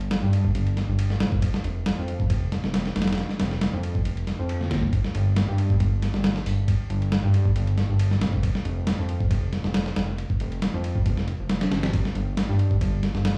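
A breakbeat groove at 137 BPM in 4/4, with a light swing on the sixteenths, drives this short, funky and raw cut from a longer breaks track. A dusty, sampler-style soul drum kit plays throughout the 13.4 seconds, its hi-hat, ride cymbal, thumpy kick and medium-tuned snare compressed, gritty and overdriven, as if re-recorded in a small room, and placed up front. Alongside it, a fat analog bass holds the low end from F1 to G2, its detuned sawtooth tone thick and sustained, with a fast attack and a filter sweep. Both parts sit close and forward in the mix. The overall sound carries a big-system feel, with a bare room's studio ambience and a large studio reverb despite the otherwise dry presentation.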